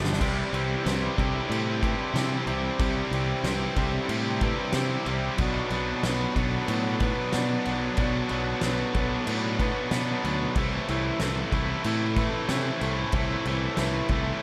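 A light reverb frames this cinematic, soaring post-rock passage, cut from a longer piece and moving at 93 BPM in a straight 4/4. It opens with a drum fill from a loose indie kit that sounds distant and roomy, with dark cymbals, a fat snare and a tight kick alongside its crash. Two bright, distorted, picked guitars sit up front playing riffs, joined by a growly overdriven fingered bass. Lower in the mix, a very quiet clean guitar with a compressed twang and a lo-fi, slightly broken-up guitar through a small old amp play arpeggios. An ethereal, detuned pad with a slow attack and ensemble chorus holds sustained chords high above. The harmony moves from Cadd9 to Bm at 5.4 seconds and then to Amadd9/C at 10.6 seconds.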